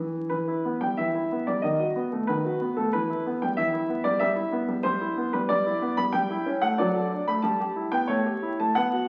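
A clear, up-front concert grand piano plays alone through this elegant, graceful fragment of a classical-period sonatina in E minor, moving with rubato at 92 BPM in 2/4, its open tone and deep bass spanning D#3 to B5 over chords that pass from Em through B7/D# and A7/G to D/F# and close on A7 at 8.1 seconds, all heard in a wet recital hall reverb through the crackle of a very old 78 rpm record.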